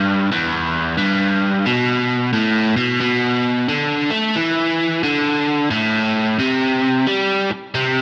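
A biting, overdriven electric guitar, picked and double-tracked up front in a low register from E2 to A3, plays alone for the full 8.0 seconds of this gritty, driving rock excerpt at 89 BPM in a swung 4/4, tuned to A4 = 438 Hz and set in a moderate echo-chamber reverb.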